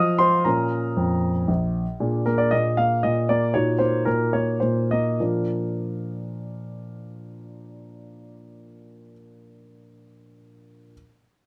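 A classical-period piano sonatina in 3/4, elegant and serious, played with rubato at a tempo ranging from 99 to 119 BPM and slowing down between 1.2 and 5.2 seconds. A solo grand piano with a polished, present tone sits up front in light reverb, spanning Bb1 to Eb6 as the harmony moves from Bbm through Bb7 and Ebm/Bb before settling on Bb at 5.2 seconds. This short passage is cut from a longer piece and runs to 10.9 seconds.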